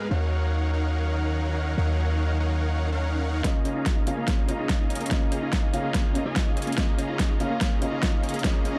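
Playful and lush, this future bass excerpt moves at 144 BPM in a half-time feel in Db major, taken from a longer piece. A felt-muted upright piano, soft and intimate with audible action noise, plays the accompaniment while a very quiet, bright studio string section holds sustained bowed chords with vibrato. Riding on top, a dense compressed supersaw, huge and detuned, carries the riff through sidechain pumping, a low-pass filter and dub echo. The deep, boomy 808-style bass sits up front with its own sidechain pumping, and a big-room drum kit brings a huge snare and metallic, overdriven hats. After a brief electronic swell, a tine-like, warbling synth pluck enters at 3.4 seconds with quiet arpeggios, alongside a punchy overdriven kick as the harmony shifts from Ebm9 to Db69 and a drum fill drives the build-up. The production is dark, with light reverb and a digital ambience.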